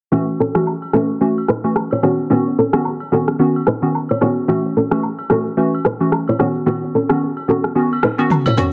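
Afrobeats at 110 BPM in 4/4 with a swung sixteenth feel, this short cut from a longer piece sits in F# dorian and has a hypnotic, mellow mood. A hollow, bouncy square-wave pluck carries the accompaniment with a detuned, chorused shimmer and a bright, up-front presence, its fast attack and short decay giving each note a quick snap. A thumb-plucked nylon-string guitar plays the riff with a warm, small acoustic tone and delay, also sitting up front in the mix. An electronic, layered deep house kit of rim click, shaker and toms runs underneath, its snare roughened by soft clipping, while agogo bells and woodblock with tube shaker and group handclap add a dry, close percussive sparkle. The harmony moves between F#m7 and Badd9, a filter sweep runs through the whole passage, and a drum fill arrives at 8.3 seconds, all within a dense, heavily limited, low-passed master with light small-room reverb.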